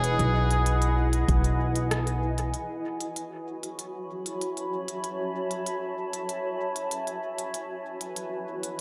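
A straight 4/4 pulse carries this short ambient dub fragment, cut from a longer piece, with an organic electronic drum kit ticking out crisp hi-hats and rim clicks through a dub echo for the whole run, its tape-warm tone re-recorded in a large room. Near the start, a cup-muted trumpet states a brief, veiled melody in a soft classical style with light vibrato and a smooth top, trailing dub echo before it drops away at 1.9 s. Up front, a woody pizzicato upright bass on steel strings anchors the low end until 2.5 s, while a single overdriven electronic kick lands deep in the background around 1.3 s. A cloudy, evolving granular pad, mellow and blurred with a slow attack and long release, holds sustained chords throughout in its own built-in reverb, moving from Emaj7 to F#m11 and back to Emaj7. An echo chamber reverb frames the sound, leaving a deep, spacious mood as the pad and drums carry on alone.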